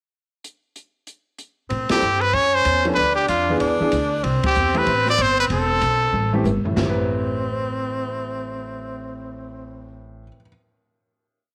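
A lone open jazz drum kit opens this complete late-night small-group swing and bop piece at 0.4 s, its dark cymbals, medium-tuned snare and boomy kick setting up a swinging 190 BPM in A minor, with sticks carrying a ride cymbal pattern. At 1.7 s a woody upright bass, touched with tube saturation, begins a pizzicato walking line, and a breathy tenor saxophone enters with a long guide-tone line shaded by vibrato and scooped notes. Moments later a brilliant, punchy trumpet takes the lead up front with a motif-based melody in period phrases, while an intimate grand piano with audible action noise comps in syncopated drop2 voicings. The band hits accents together, and a drum fill leads into a sustained final chord after the trumpet has finished its melody. A moderate echo-chamber reverb gives the small combo a roomy studio glow.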